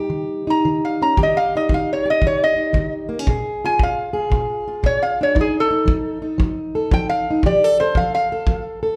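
A swung 4/4 groove at 115 BPM sets a laid-back, gritty mood for this short acoustic country blues cut from a longer piece. A fingerpicked, plugged-in parlour steel-string guitar carries the accompaniment from the start with a boxy tone, moving from Eb through a Bb7 with its third omitted to F7. At 0.5 seconds a lap resonator guitar takes the melody, played with fingerpicks and a steel bar for a metallic, nasal slide voice that sits up front and stands out as the featured solo. A kick drum played with brushes joins at 1.2 seconds, punchy yet roomy. The whole performance is set in a moderate recital hall reverb with a church or concert hall ambience.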